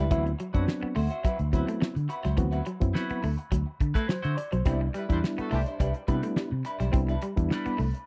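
A straight 4/4 funk groove drives this hypnotic excerpt, anchored by a damped 70s drum kit with a fat snare and tight kick sitting up front beside a dark, round, foam-muted fingered bass. A barky, reedy electric piano with overdrive and fast tremolo punches out stabs, while a clean picked guitar through wah and spring reverb fills in accompaniment and a twangy guitar at the edge of break-up plays a riff, as the harmony moves from D13 to Cmaj9 at 4.7 seconds. A clear horn section with light vibrato slips in a brief second line from 4.9 to 5.6 seconds, all captured in a dry, close 1970s-style studio sound.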